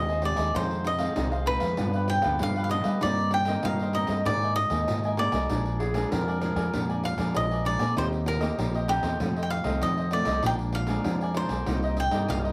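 Heard from further back in a wet studio room, this short excerpt of samba and choro moves at 97 BPM in a straight 4/4, nostalgic and lively, over chords such as Abmaj7/Eb, Bb7 and Eb6. A bright, crisp cavaquinho carries the melody up front, while a second, mellow cavaquinho and a small, fingerpicked nylon-string guitar in the background fill out the accompaniment above a dark, round, punchy fingered electric bass and a jingly pandeiro played with hard hands at a distance. From 5.8 to 6.8 seconds a clear clarinet with a soft attack adds a brief, roomy, classical-style second line.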